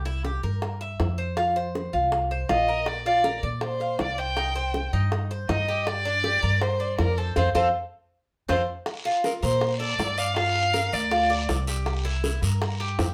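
A picked Cuban tres opens this danceable excerpt of Cuban son and guajira alongside the upright bass, its metallic double strings, some doubled at the octave, ringing out bright arpeggios up front. Beneath it, a woody, growly pizzicato upright bass sits forward in the mix, while tight, high-tuned bongos join almost at once, driving a straight 160 BPM in 4/4 in Bb major. At 2.5 seconds a single bowed violin takes the melody, smooth and expressive, with vibrato and portamento that give it a warm, singing voice. A drum fill and a band accent arrive at 7.4 seconds, and at 8.9 seconds a raspy, dry guiro enters as the music moves into its next section. The group sounds as if it is playing live in one room, with wet studio reverb lending some space.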